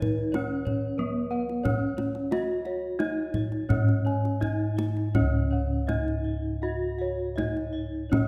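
In a straight 4/4 at 81-95 BPM, this serene, ceremonial Javanese gamelan excerpt in Db slendro sets a bright, up-front bronze metallophone melody with shimmering paired-tuning beats over dark, smooth bossed-gong bass, while mellow padded-beater bossed gongs and a boxy second metallophone ring out arpeggios and a close, dry kendang taps under soft hands, all across the 8.3 seconds, bathed in a wet 1.5-second scoring-stage reverb, as the music shifts to a new section at 5.1 seconds.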